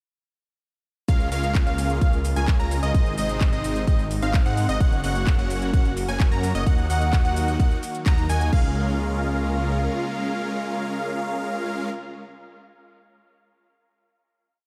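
Uplifting and euphoric, this short festival progressive house piece in Db major runs at 129 BPM in straight 4/4, launching straight into a drop at 1.1 seconds that cycles through Db6, Ab, Gb and Ebm before settling on a final Db6 chord from 8.5 seconds. A huge, phaser-coloured supersaw lead carries the dotted-rhythm riff in open voicing, while a punchy plucky lead doubles the chords in unison with bright arpeggios, both trailing diffuse ambient delay over a lush, chorused pad in the background and a thick, menacing detuned saw bass tied to the chord rhythm, all four pumping with sidechain. An up-front four-on-the-floor kick and a tape-touched house kit of metallic hats, ride, shaker, claps and crash drive the drop until 8.6 seconds, leaving the bass to stop at 9.9 seconds and the melodic parts to ring out in a dreamy, reverb-soaked hall.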